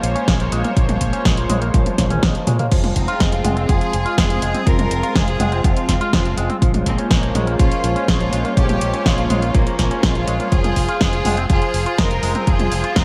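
Light reverb and a layer of vinyl crackle frame this melodramatic, danceable italo disco excerpt in F minor at 123 BPM, where a lush, detuned sawtooth pad with chorus and phaser holds sustained chords over a punchy, bright fingered bass with an envelope filter. An up-front house kit with gated reverb, bright hats and a punchy snare plays a fill at 1.7 seconds, an electronic kick thumps in from 0.3 seconds, and a twangy, clean guitar with an envelope filter, low-pass filter and digital delay picks arpeggios in the background. From 3.0 seconds a clear, biting chamber violin section carries the melody with light vibrato over chords moving between Bbm7 and Fm.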